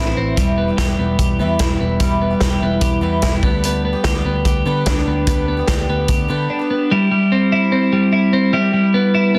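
The groove runs at 147 BPM in a straight 4/4, with a vintage drum kit of hi-hat, punchy kick and medium-tuned snare sitting up front from 0.4 s, its top end rolled off in a natural small-room sound. This is a short cut of jangly indie pop with a restless, bittersweet mood, moving from Em to G/D and then to C/G before returning to Em. A vintage muted electric bass plays a dark, round, foam-muted line beneath, while a picked twelve-string acoustic guitar adds boxy, shimmering, octave-doubled accompaniment with a swing to it. Leading the arrangement is a bright, twangy, compressed twelve-string electric guitar playing clean arpeggios through a digital delay. The drums, bass and acoustic guitar drop away by 6.9 s, leaving the electric guitar alone until 9.4 s, all set in moderate plate reverb within a dense, heavily limited modern master.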